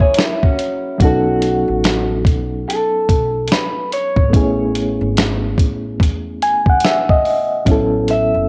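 A gritty, overdriven reed electric piano with a fast tremolo sits up front through a combo amp in this cosy, mellow lo-fi hip hop excerpt at 72 BPM in A lydian, swung on the sixteenths and carrying a fill from 6.0 to 7.7 seconds. A fingerpicked flamenco guitar with finger squeak opens over thumpy, compressed sampler-style drums with a medium-tuned snare and 12-bit grit, then at 1.0 seconds hands off to a slightly broken-up, picked electric guitar melody through a small old amp, joined by a woody, dark pizzicato upright bass. Cassette tape colours the guitars, piano and drums, with light reverb, while chords move from F#9 through B9 and Amaj9 to A6.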